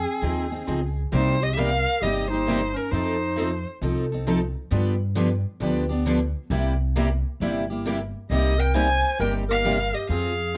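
A close, detailed recording with a touch of light reverb captures this short excerpt of acoustic string swing in the jazz manouche style, moving at 134 BPM in 4/4 with a lilting swing on the eighth notes and a virtuosic, bittersweet mood. An upright bass with gut strings sits up front through the whole passage, its pizzicato notes woody and thumpy. Two picked steel-string acoustic guitars carry the accompaniment from 0.2 seconds, one full-bodied like a dreadnought, the other boxy like a parlour instrument, both bright. A single bowed violin sings the melody with vibrato and portamento, expressive and warm, while a dark, breathy clarinet with a soft attack, scooped notes and light vibrato adds a whispered, intimate second line with a vintage jazz character. The violin and clarinet play together from the start until 3.7 seconds, drop out, and return at 8.3 seconds. Across the excerpt the harmony moves from Fm7 through Cm7, F7, G7 and C7 before settling back on Cm7.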